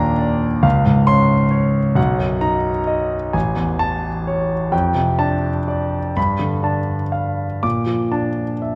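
Impressionist classical solo piano, hazy and mysterious, unfolds in a slow, rubato 6/8 across this 8.8-second fragment of a longer piece. A clear, polished concert grand sits up front with deep bass, long sustain and audible action noise, drifting through lush chords from Ebmaj7 and C#maj7 through Bmaj7 and Amaj7 to F69, G9 and Bbmaj7. The intimate piano tone is set within the wet, two-second bloom of a concert hall.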